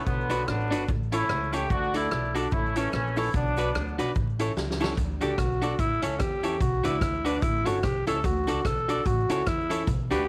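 A breathy, raspy alto saxophone takes an up-front solo from 5.2 seconds in this cheerful, swinging ska excerpt, following a tight, punchy horn section that carries the melody until 4.1 seconds, over woody pizzicato upright bass, a big-band drum kit with a fat snare and a fill at 4.6 seconds, a slightly broken-up electric guitar, dark upright piano stabs in the background, a very quiet grainy cabasa and vinyl crackle.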